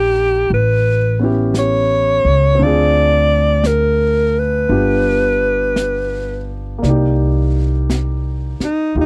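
A clear, punchy alto saxophone with vibrato carries the melody over a warm grand piano and a woody, growly pizzicato upright bass in this smoky, melancholic jazz ballad in C minor, moving at a slow 57 BPM with swung eighths. Brushed drums with a high-tuned snare and hi-hat join softly at 0.5 seconds as the harmony moves from Cm9 through A7, Dm7b5 and G7. At 6.8 seconds the saxophone takes a forceful solo as the chords return to Cm9, all captured in a dry, close 1970s-style studio sound with light reverb.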